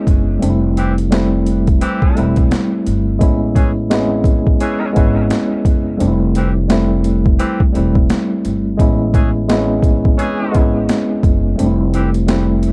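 A swung boom-bap groove sets a nostalgic mood, driven by a gritty, pitched-down sampler-style drum kit with a thumpy kick and high-tuned snare, up front and overdriven, alongside a woody, dark pizzicato upright bass. A worn, slightly out-of-tune tine electric piano with light overdrive and a cassette-tape haze carries the Fmaj9 and Amaj9 chords from the start. From 0.8 seconds, a punchy, vintage horn section adds tight stabs with light vibrato and tape echo, all sitting in a light reverb in this cut from a longer piece.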